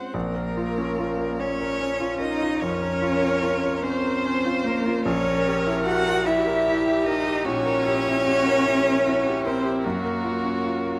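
A slow, rubato pulse in 12/8 carries this serene, romantic movement for piano quartet, cut from a longer piece and lasting about 11 seconds. A single violin sings the melody with vibrato and expressive portamento, while one cello, dark and woody, shapes a second line beneath it. One viola adds rich, smooth and even bowed accompaniment with vibrato. Up front, a clear, polished concert grand supplies the accompaniment with deep bass, long sustain, an intimate presence and audible action noise. The harmony moves from a minor chord to a diminished seventh at 5.0 seconds and settles on a major seventh at 9.8 seconds, all within a wet recital hall reverb.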